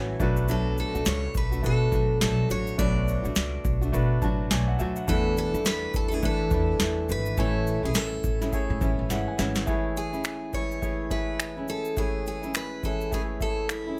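A sunny, carefree acoustic pop excerpt opens with a clear concert grand piano, a fingerpicked nylon-string guitar with audible finger squeak and a woody pizzicato upright bass, soon joined by a booming, overdriven analog drum machine with a deep kick, crisp snare, shaker and finger snaps, while an up-front, bright picked steel-string acoustic guitar carries the melody through delay, the piano adding fills and the bass dropping out at 9.6 seconds as a drum fill leads into a new section, all set in light reverb.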